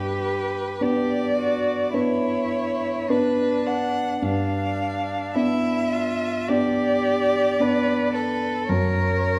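Unfolding in a slow, rubato 4/4 at about 53 BPM, this short fragment of a romantic piano trio movement breathes freely and carries a yearning, melancholic mood. A single bowed violin sits up front and sings the melody with a rich, focused tone and expressive vibrato. Beneath it, one bowed cello shapes a second line, its vibrato-laden sound smooth at the top. The concert grand piano provides the accompaniment, also up front, with a warm, natural voice and a deep bass register. The harmony rests on G before shifting to F# at 8.7 seconds, all slightly below standard pitch at A4 = 439 Hz and wrapped in the generous, wet reverb of a recital hall.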